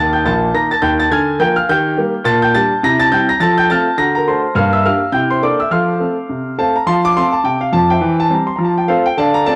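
Swinging and playful, this brief stride piano excerpt from a longer jazz piece moves at a brisk clip with a lilting swing on the eighth notes. A lone concert grand carries the whole performance, ranging from deep bass notes low in the keyboard up into high upper registers. The piano sits up front with a natural, warm tone, its low end deep and rich. A wet spring reverb gives the sound a springy halo, while the home cassette recording adds a homespun, intimate character. The harmony travels through lively turnaround changes, passing through chords like D7, Gm and C13 before settling on F near the 5.7-second mark, and a new section begins at 6.9 seconds, resolving back to F just before the piece cuts off at 9.6 seconds.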